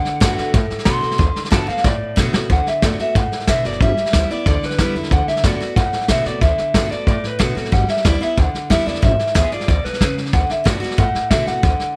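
Retro and upbeat, this rockabilly excerpt opens with a clean electric guitar solo through a small old amp, its dark, lo-fi, slightly broken-up tone carrying the melody with tape echo, while a drum fill from 1.8 to 2.5 seconds leads into the next section. Underneath, a brush-played drum kit sits up front with a punchy kick, a medium-tuned snare and a rolled-off top; a pizzicato upright bass with gut strings adds a woody, thumpy low end; and a bright, full-bodied dreadnought acoustic guitar picks out the accompaniment. The harmony moves between D6 and G6 with a brief G#dim7 turn, and the sound is dry and natural, as if in a small room.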